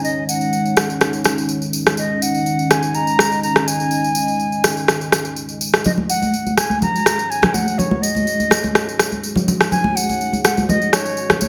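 A straight afro house groove drives this short section cut from a longer piece, with an electronic rim click entering at 0.8 seconds, up front, tape-warm and set in a small room. A jingly, bright tambourine shimmers through the whole passage, and at 5.9 seconds high-tuned acoustic congas with a thick skin join in, just as the harmony shifts from Dbsus2 over Eb to Ebm7. Beneath them, a dark analog pad holds deep, moody sustained chords, its detuned sawtooth and triangle tones with a sub octave, slow attack and chorus giving it a full-bodied weight. On top, a concert flute carries the melody in a pure, straight tone with a crisp attack, sitting forward in the mix with a delay trailing its phrases. A moderate digital room reverb with a small-room ambience ties the parts together, leaving a driving, warm feel.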